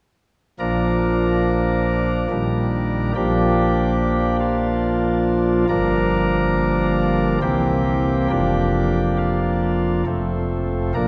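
A nasal cornet stop on pipe organ, voiced in baroque style with a touch of chiff and set up front, plays alone from 0.6 to 11.1 seconds in this reverent, serene classical chorale in Bb major, moving in a rubato 3/4 at 69 BPM through chords such as Ebmaj7/Bb, Gm7 and C7 before settling on F, all bathed in a dark production and the long, wet reverb of a church.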